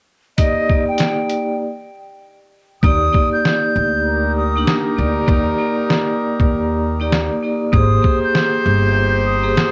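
A pure, straight-toned concert flute carries the melody over a ringing, metallic hard-mallet vibraphone with fast motor vibrato in this soulful, confident boom-bap hip-hop excerpt at 98 BPM in Eb major, swung on the 16ths and moving from Ebmaj7 to Abmaj9. Muffled, pitched-down sampler drums with a thumpy kick sit up front, breaking at 1.6 seconds before the hi-hats are muted at 2.8 seconds, where a woody, growly pizzicato upright bass with tube saturation enters. At 4.0 seconds a dark, punchy trumpet section adds tight, distant stabs through analog delay, while flute, vibraphone, drums and trumpets all carry a cassette tape color in a home-recorded room.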